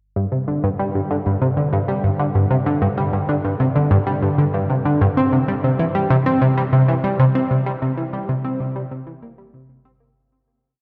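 Bathed in a cathedral-sized reverb with a faint mains hum beneath, this brief, cosmic and hypnotic ambient piece is carried by a lone, up-front sequenced synth, its detuned sawtooth and pulse-wave tones plucked tight through a filter and thickened with chorus and analog delay, cycling a driving 7-step loop that drifts against the bar until a fade-out begins at 6.8 seconds.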